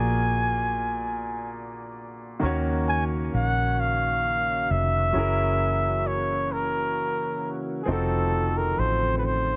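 In a slow, straight 6/8 lilt, this yearning late-night R&B excerpt sets a breathy, whispered flugelhorn melody up front over a baby grand piano with long sustain and a dark, foam-muted, punchy electric bass, while a lightly overdriven tonewheel organ with key click and slow rotary speaker enters at 2.4 seconds with sustained chords, all under light reverb and a soft high end.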